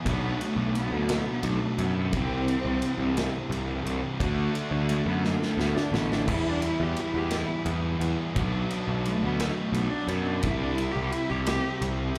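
In a straight 6/8 at 58 BPM, this brooding, cathartic quiet-loud alternative rock fragment, heard live through a club PA, sets a close, dark, bowed cello solo full of vibrato, portamento and digital delay over a double-tracked, compressed fuzz guitar riff with slapback echo, a growly overdriven picked bass up front, and a big acoustic rock kit with punchy kick and bright cymbals that plays a fill at 5.2 seconds, all moving through Bm, C, D and Em.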